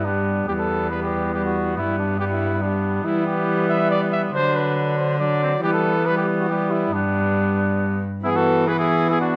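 Set in 3/4 at 140 BPM with a straight feel, this short fragment cut from a longer piece is a courtly, festive renaissance-style consort dance, tuned to A4 = 442 Hz. A warm cornet carries the melody up front with light vibrato, ranging from D4 to E5. Beneath it, a mellow cor anglais sings a second line from B3 to G#4, sitting distant and roomy with its own light vibrato. A clear, present trombone supplies accompaniment between F#3 and B3, while a single bowed cello anchors the bass from E2 to E3 with a rich, reedy gut-string tone placed up front. The harmony moves through Em, G and D before settling on a bare E5 as the opening phrase begins again at 8.2 s, all wrapped in a moderate recital hall reverb.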